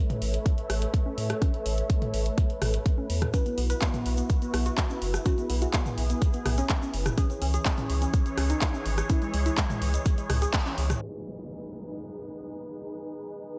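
A filtered, airy supersaw swell opens this euphoric, expansive progressive house excerpt at 125 BPM, soon joined by a punchy, up-front kick, a thick saturated sub bass, handclaps, hi-hat and rim click, and overdriven electronic toms and congas in the background, with the sub bass, hi-hat, toms and congas pumping under sidechain, while a soft, round, detuned pluck arpeggio with subtle chorus and delay and a grainy, bright egg shaker enter at 3.3 seconds, moving through Aadd9, Bsus4 and C#m before a band accent at 10.5 seconds gives way to an up-front downlifter over G#m from 11.1 seconds.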